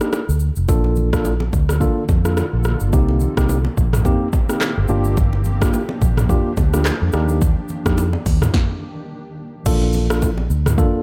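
A swung afrobeats groove at 107 BPM in 4/4 sets a sultry, hypnotic mood. It is driven by an overdriven deep house drum kit up front, with a deep kick, punchy snare, metallic hats, handclaps, rim clicks, shaker, toms and crash, re-recorded in a large room. Very quiet bongos and congas add hard-handed acoustic colour, while a dark, round, foam-muted fingered electric bass sits up front in the low register. A mellow, clean tine electric piano carries the chords, moving through Ebmaj7, Bbmaj7, Cm7 and Gm7 and back. From 1.8 s a blurred, detuned granular pad with a slow attack and its own reverb evolves in the background until 8.5 s, when the music stops briefly before a closing section arrives on Bbmaj7 at 9.7 s. This fragment of a longer piece sits in a digital ambience.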